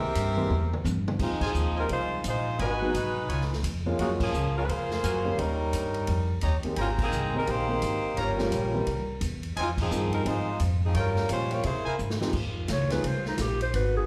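A bright, close-miked saxophone section carries the melody over a woody, thumpy upright bass in this brassy big band swing excerpt in F minor at 172 BPM, with a swinging drum kit with a punchy kick and a clear upright piano with audible action noise entering within the first second. A tight trumpet section punctuates with stabs and band accents starting at 1.4 seconds, while slapback echo colours the saxophones, piano, trumpets and clarinet, all heard through club reverb at a live gig. After a drum fill, at 12.3 seconds a warm saxophone section takes over, holding sustained chords beneath a mellow, soft-attack clarinet solo with vintage subtone.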